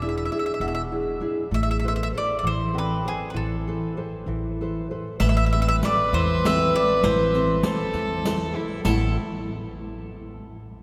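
Wistful and passionate, this fragment of a rubato Italian folk serenade in 6/8 places a mellow, round mandolin melody up front over fingerpicked nylon-string guitar with audible finger squeak and woody, thumpy pizzicato upright bass on gut strings, before a floating sul tasto line from a dark violin and a softly played riq with shadowy jingles enter at 5.2 seconds, the ensemble heard within a cavernous cathedral reverb.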